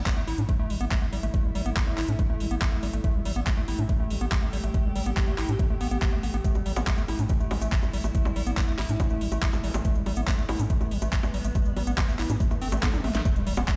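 Intense, driving psychedelic trance cut from a longer piece, built on an up-front knocking electronic kick and a layered garage kit with cracking snare, metallic hats, bongos, handclaps and toms, while a round, deep analog bass sits beneath a squelchy, gritty acid riff with dub echo that pumps against a mellow, morphing wavetable pad. A grainy cabasa joins at 6.4 seconds, a very quiet zap flickers at 9.5 seconds, and a swell and impact close around a drum fill, all heard through a bare stone room on a big sound system.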